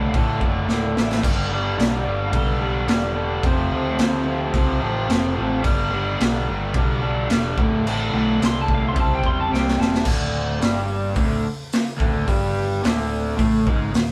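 A bright, double-tracked overdriven guitar riff leads this swaggering, rowdy garage rock cut, backed by a growly, punchy overdriven bass and a gritty, saturated drum kit with dark cymbals and a pumping small-room sound, while a twangy clean lap steel with slide and volume swells carries the melody in the background until 10.1 seconds, the band playing live together in one room with light reverb.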